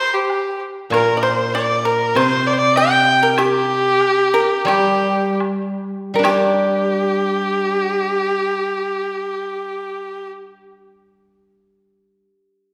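Chinese traditional chamber music in a graceful, wistful mood, this rubato fragment in 2/4 and G yu mode moves at 66-100 BPM and slows between 3.4 and 6.2 seconds, with a rich, earthy bowed erhu singing the up-front melody with light vibrato, biting attack and portamento, while a dry, percussive fingerpicked pipa traces a second line in the background from 0.9 seconds, a mellow, silvery steel-string zither rings out its accompaniment up front until 12.2 seconds, a very quiet, close woodblock taps along early on, and a recital-hall reverb lends the ensemble a spacious glow.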